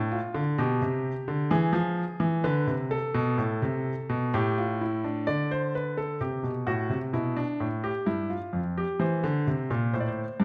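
Contemplative yet driving, this short baroque-style two-part invention for solo grand piano, cut from a longer piece, moves in a straight 4/4 through a chain of chords from Bdim to C7, its clear, intimate, up-front tone carrying audible action noise and sitting in a moderate recital-hall reverb, with a second section arriving at 5.3 seconds.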